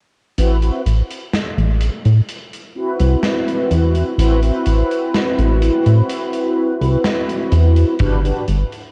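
A slow, straight 4/4 pulse at 63 BPM comes from a big rock drum kit of hi-hat and medium-tuned snare, roughened by 12-bit sampler grit and set back behind a glossy, up-front chorused synth bass and a round, detuned synth brass coloured by chorus, delay and cassette-tape haze, shaping a melancholic, woozy vaporwave excerpt in A dorian that rests on Am69 before moving to Gmaj7 at 8.0 s, where a punchy kick briefly joins in the background of the dark, lightly reverberant small-room mix.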